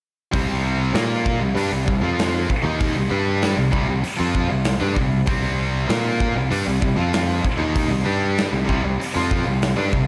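A high-gain distorted guitar and a tight, picked distorted guitar with slapback echo drive a menacing C minor riff from 0.3 seconds, holding on a single Cm chord throughout this short hard rock cut from a longer piece. Underneath, a punchy, up-front picked electric bass and a big acoustic rock kit with a punchy kick, medium-tuned snare and hi-hat push a straight 97 BPM in 4/4. A lush hall reverb gives the aggressive performance a big arena sound.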